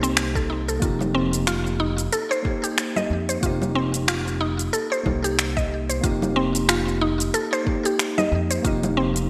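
Bright, 1980s-style digital production gives this recording its sheen, and a lush hall reverb with a long tail surrounds it. This short organic downtempo passage moves at 92 BPM in 4/4 with a swung sixteenth feel, resting on a single F9sus4 chord for an earthy, warm mood. Up front, a woody, round, mallet-like FM synth pluck plays chorused arpeggios with a fast attack, short decay, a noise layer, 12-bit sampler grit and delay. Behind it, a mellow, clean tine electric piano supplies accompaniment, pumping with the kick and echoing through its own delay. A dark, pizzicato upright bass with steel strings sits prominently in the low end, also pumping with the kick. The layered deep house kit brings congas, finger snaps, a shaker and metallic hi-hats with a tape-warm character, studio reverb and gated reverb, while a deep electronic kick enters at 0.4 seconds and stops at 8.8 seconds.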